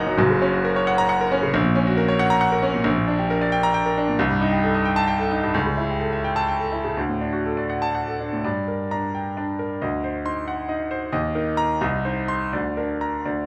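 Passionate and stormy, this brief passage from a longer classical virtuoso piano study in G minor unfolds in a rubato 6/8 at roughly 79-92 BPM, its solo grand piano sounding clear, polished and up front across a range from Gb1 to C6 in a moderately reverberant large studio. It moves through Gb, Gm/Bb, Am7b5/C, A7/C# and D before turning at 8.4 seconds toward a new section that passes through Gm, D7b9, Eb5 and Cm to close on Bb/D.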